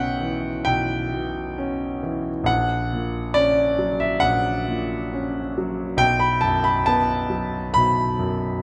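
Yearning and melancholic, this short excerpt from a romantic classical nocturne unfolds in B minor at a rubato 67 BPM in 4/4, with the solo concert grand tuned to A4 = 437 Hz. The warm piano sits up front with a deep bass and natural tone, spanning A#1 to B5 as it moves from C#m7b5/B through F#/A# at 2.5 seconds to a bare B5 at 6.0 seconds. A moderate concert hall reverb surrounds the instrument over the 8.6-second passage.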